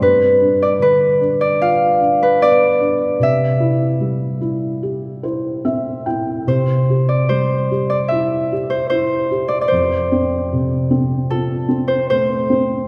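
A gentle, tender children's lullaby in C major at 75 BPM, this short passage from a longer piece moves with a rubato feel as a fingerpicked, ringing Celtic harp carries the melody up front. A felt-muted upright piano supplies a dark, boxy accompaniment with short sustain beneath the harp, adding a soft fill from 4.8 to 6.5 seconds, while the harmony moves from G7 to C and later to F. A wet concert hall reverb surrounds the pair, giving the intimate playing a spacious, church-like glow.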